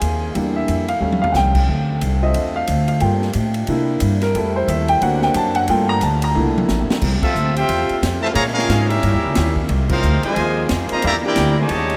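Big band swing, energetic and joyful, set in a vast, echoing space with a long cathedral reverb. A warm, open baby grand piano with long sustain takes a solo up front for the first 7.0 seconds over a woody pizzicato upright bass, a very quiet close-miked saxophone section holding sustained chords, and an airy, polished drum kit with a punchy kick that adds fills along the way. At 7.2 seconds a clear trumpet section with light vibrato takes the melody, while a soft-attack trombone section plays a second line in the background and the band hits accents.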